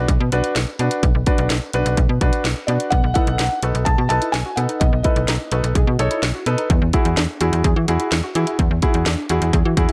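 A punchy house drum kit with a cracking snare drives this melancholic synth-pop excerpt at 127 BPM, joined by a snappy, metallic FM slap bass, a polished grand piano, a soft felt-muted upright piano carrying the melody from 2.7 to 6.4 seconds with audible action noise, and a lush, detuned unison pluck with tape echo sitting in the background as the chords move from Bm through B7 to Eadd9 in light digital reverb.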